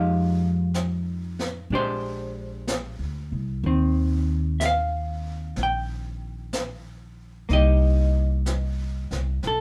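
Swung eighths carry this tender, late-night jazz ballad fragment, where a dark, clean hollow-body electric guitar picks chords from Fm9 through Bb13 to Eb69 and Cm7 over up-front woody pizzicato upright bass, with a distant, roomy brushed drum kit of snare and hi-hat joining at 0.7 s, all set in light reverb.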